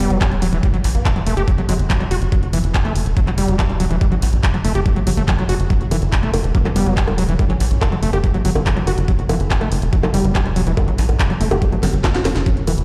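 A tight, nasal sequencer bass, a gritty, squelchy acid bass riff with distortion and delay, and a drum kit of cracking snare, bright hats, handclaps and bongos open this intense, hypnotic psychedelic trance excerpt at 142 BPM in F# phrygian, joined at 0.2 seconds by an up-front knocking electronic kick. In the background, a juicy, detuned blip pluck with phaser and chorus adds a second line in short bursts, and a drum fill leads to a morphing, vintage wavetable pad that only surfaces at 12.6 seconds. The mix has a light, large studio reverb and the feel of a big sound system in a bare room.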